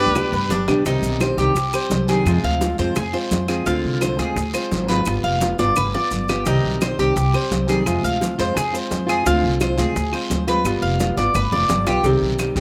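A brilliant, punchy trumpet and a biting chamber violin section sound only in the opening 0.6 seconds with slapback echo, over a dark, fingerpicked nylon-string guitar, a metallic, echoed Cuban tres and a thumpy, up-front gut-string upright bass, while from 0.2 seconds ringing congas, very quiet bongos and cowbell, woody claves, a raspy guiro and grainy maracas drive this nostalgic, danceable Cuban son and guajira cut, with drum fills and a dry outdoor sound.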